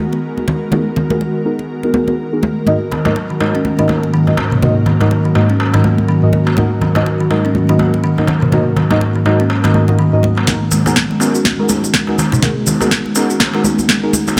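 A lush hall reverb bathes this hypnotic, driving afro house excerpt, cut from a longer piece and riding a swung groove. An ethereal, airy pad holds sustained chords from the very start, pulsing under sidechain pumping, while close, dry congas with hard hands and a deep, mellow chord stab treated with chorus, phaser and delay enter almost at once, the stab moving under a filter sweep through the opening stretch. At 2.9 seconds a woody, ringing kalimba joins with bright thumbnail-plucked arpeggios through a low-pass filter and delay, alongside a crisp, metal-shelled darbuka heard distant in a large room. At 10.5 seconds a build-up begins: a drum fill rolls in with a sharp, up-front electronic snare, a deep, tape-tinged kick sits in the background, a grainy tube shaker appears, and a dark detuned saw bass rumbles barely audibly beneath. Filter sweeps move across both the kalimba and the pad as this final passage builds.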